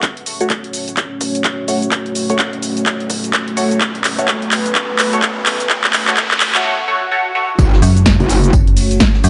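A distorted, metallic wobble bass bursts in up front at 7.6 s for the drop, joined by a dark, overdriven FM bass, both with sidechain pumping, in this bouncy, swaggering bass house excerpt in F# minor at 127 BPM with a swung 16th feel. Before that, the build-up rides a punchy, tape-warm electronic kick and a layered house kit of claps, hats, shaker and snare playing a drum fill, while a nasal, band-passed chord stab with phaser, cassette-tape grit and dub echo moves through a filter sweep over a deep, moody sawtooth pad with chorus and pumping. In the background, a riser climbs through the build-up, a swell marks the break and an impact lands on the drop, and a faint brushed acoustic kit of hi-hat, snare and tambourine sits beneath the drop, inside a moderate digital room reverb.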